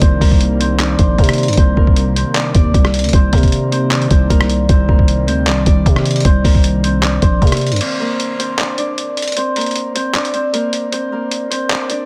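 A muffled, pitched-down sampler-style drum kit sits up front in this dark, melancholic trap excerpt, its thumpy kick, hi-hat, handclaps, rim click and crash cymbal moving at 154 BPM in a half-time 4/4 feel. Over it, a bright, ringing Celtic harp carries the fingerpicked melody in C minor, while a warbly, detuned tape-like pad holds mellow, nostalgic chords in the background, softened by chorus and its own reverb. A growling, buzzy 808-style bass with a fast attack and decaying tail anchors the low end under a Cm7 chord. At 7.8 seconds the pad and bass drop away for a break on Bbadd9, leaving the harp and drums to carry on, the drums stopping at 12.0 seconds and the harp ringing until the clip ends at 12.1 seconds. The mix is dry, dense and heavily limited, with a modern loudness.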